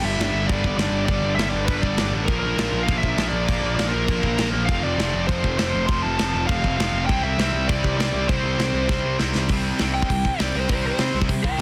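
An upbeat, energetic punk rock excerpt at 200 BPM opens with a dark, distorted lead guitar carrying a bluesy melody over a growly, fuzz-driven picked bass up front and three bright, distorted rhythm guitars riffing, two in the background and a third double-tracked and very quiet, before a punchy acoustic drum kit with a medium-tuned, softly clipped snare enters at 0.2 seconds, moving through G, Bb, F and C until a drum fill at 8.9 seconds leads into a lead guitar solo at 9.5 seconds, all within a light reverb and a dense, heavily limited modern master.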